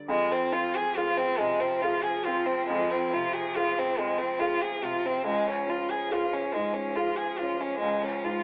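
A slow, rubato 3/4 at 70 BPM carries this longing, reflective neoclassical passage in F minor, tuned to A4 = 439 Hz and cut from a longer piece, with the harmony moving from Fm to Db at 5.3 seconds. A felt-muted upright piano gives soft, mellow, intimate accompaniment with audible action noise, while an up-front bowed violin sings the melody with vibrato, portamento and a gentle attack, and a rich, smooth cello holds a second line on F3. The players sound live together in one room with light reverb, but the whole recording has a telephone-like tone.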